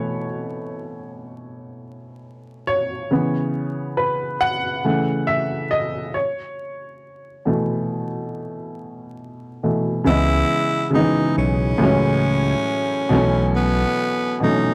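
Reflective and hazy, this slow hip hop excerpt at 69 BPM with a 16th-note swing opens on a woody, polished upright piano playing alone over chords like B9sus4 and C#m7 until 10.1 seconds, when a raspy, growling tenor saxophone takes up the melody with scooped notes and a smooth sawtooth synth bass with vibrato joins beneath, all set in a gritty, dry hardware sound with vinyl crackle and moderate studio ambience.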